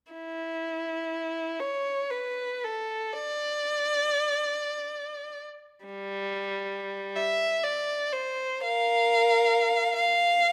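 The rhythm moves in a six-eight metre, stretched and relaxed through free rubato so that the pulse bends with the phrasing rather than holding a strict beat. This is a classical piece for a single unaccompanied violin, and its mood is yearning and meditative, as if the player is thinking aloud. The bowed violin plays alone from 0.1 to 10.5 seconds, spanning G3 to F5, with a rich, focused tone shaded by expressive vibrato. Close, detailed microphones keep the instrument up front and intimate, while a light reverb adds a gentle sense of space around it. The brief passage is cut from a longer work, so it feels like a single reflective thought lifted from a larger, unfolding musical line.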